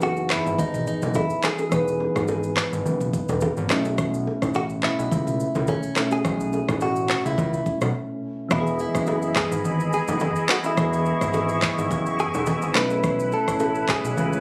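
A lightly swung sixteenth-note afrobeats groove in 4/4 rides on an up-front electronic afro-pop kit of deep kick, handclaps, rim click, shaker and toms, with band-limited vintage bongos and congas in the background and a fat, saturated analog bass with a plucky filter beneath. A bright, clean, directly recorded electric guitar carries the breezy, romantic melody through tape echo, while round, mellow electric-piano-like synth keys add chorus-and-tremolo chords over a gentle Emaj7 to B9sus4 cycle. After a brief break at 7.9 seconds, an airy small flute group enters at 8.5 seconds with warm vibrato-laden sustained chords, all heard through a phone capturing the studio room with moderate reverb and compression.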